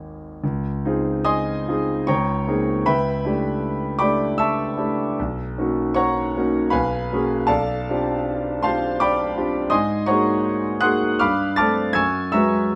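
In a loose, rubato 3/4 at roughly 70-84 BPM, this short impressionist classical passage for solo grand piano drifts in a hazy, dreamy mood, taken from a longer piece. The piano sounds clear, smooth and faintly vintage, with long sustain, and it sits up front in a darker-toned production wrapped in moderate studio reverb. Its range spans from Ab1 in the deep bass up to A6. The harmony glides through lush extended chords, opening on Dbmaj9 at 0.4 seconds, moving through Cbmaj9 at 5.2 seconds and Abm11/Cb, then settling into a chain of suspended ninths (Ab9sus4, G9sus4, Gb9sus4) that closes the fragment at 12.8 seconds.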